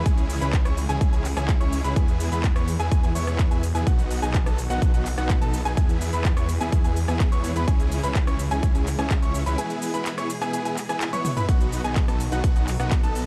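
A straight 4/4 pulse from a punchy, overdriven electronic kick sits up front in this euphoric, anthemic festival progressive house clip, alongside a layered dance kit of crisp hats, handclaps, rim clicks, shaker, ride and toms, while a thick, menacing detuned saw bass, a huge, bright supersaw riff with delay and a clear, worn grand piano spinning delayed arpeggios all pump with sidechain over a very quiet, lush string section holding sustained chords in a dark production, with a break at 9.6 s and a drum fill at 11.1 s.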